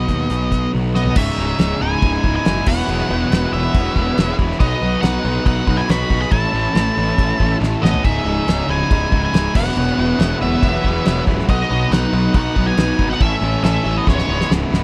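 Dry and close, this gritty, brooding classic rock clip carries the feel of a 1970s studio, with little reverb on anything. At 139 BPM in a straight 4/4 and C# minor, it is anchored by a fuzz-drenched, overdriven picked electric bass sitting up front, while a damped 70s drum kit with a fat snare and tight kick drives the groove and throws in fills around 0.7, 7.6 and 14.1 seconds. Two picked electric rhythm guitars, one biting and one sludgy, grind out the riff in the background, and above them an octave-fuzz lead guitar, dark and colored by wah and distortion, carries the melody. A nasal second lead guitar with a parked wah adds a second line from the background, and a very quiet tonewheel organ, shouting and lightly overdriven with key click and a slow rotary speaker, holds sustained chords from 0.9 seconds. The harmony cycles through C#madd9, Eadd9, B and A before settling on C#m7 at the cut-off of this portion of a longer piece.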